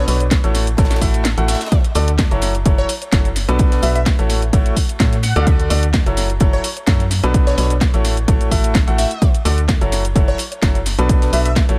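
Set in a small room with an echo-heavy mix, this uplifting, feel-good piano house excerpt moves at 128 BPM in 4/4, with a light 16th-note swing, in A major tuned slightly sharp to A4 = 445 Hz. A clear concert grand piano carries the riff, intimate and polished with audible action noise, deep bass and long sustain, pumping against the sidechain and trailed by analog delay, while a hollow, organ-like FM bass with a fast, decaying attack sits dark and pumping underneath. The chords cycle through Bm7, A6, D and F#m7. A punchy, catchy plucky unison lead built from detuned sawtooth, sine and a noise layer sings the melody in the background with vibrato, a moving notch, lush chorus, cassette-tape color and analog delay. The drums stack a tape-warm, punchy electronic kick up front, a layered garage kit with a cracking snare, hi-hat and shaker through analog delay, and a very quiet acoustic fusion kit with a high-tuned snare and ride cymbal. 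The kick briefly drops out between 1.2 and 1.7 seconds before driving on to the end at 11.7 seconds.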